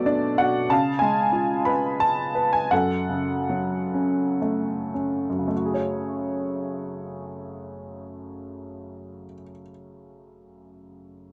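A dark production with light reverb and a faint mains hum frames this brief cut from a longer classical piece for solo upright piano, in F# minor and 3/4 time. The mood is brooding and bittersweet, the lyrical playing moving in a free rubato somewhere between 49 and 94 BPM. The piano sits up front, intimate and woody, with a worn, slightly detuned character, long sustain and audible action noise, spanning F#2 to B5. It opens on Bm7 and moves through C#7 to F#m, slowing down from 0.7 seconds until a new passage begins at 5.5 seconds. That second passage rests on F#madd9 until the excerpt ends.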